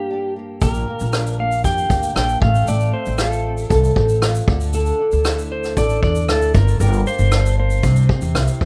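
A clean lap steel guitar sings the melody from the start with slide and volume swells, bathed in plate reverb and delay, over a small, fingerpicked nylon-string guitar that is double-tracked and also carries plate reverb. At 0.6 seconds a woody, growly pizzicato upright bass enters up front, joined by a vintage brush kit with a punchy kick, rim clicks, shaker and a rolled-off top, settling into a straight 116 BPM groove in F major through chords moving from Gm to Bb6, F/A, Dsus2 and C. This carefree, sunny acoustic pop fragment, cut from a longer piece, has the light reverb and rough, homespun mix of a home demo.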